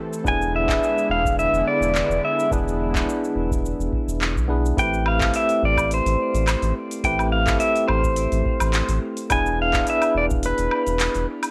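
A swung 16th-note groove at 106 BPM, built from a smooth R&B kit of cabasa, handclaps, metallic hi-hat and woodblock over a deep electronic kick sitting in the background, drives this wistful sunset chillout fragment in A minor, where a round, dark analog bass and a clean tine electric piano support an up-front, twangy pedal steel guitar melody with slide, volume swells and tape echo, while a lush, detuned sawtooth pad with chorus holds sustained chords until it drops out at 4.7 seconds, all captured in a dry, gritty recording.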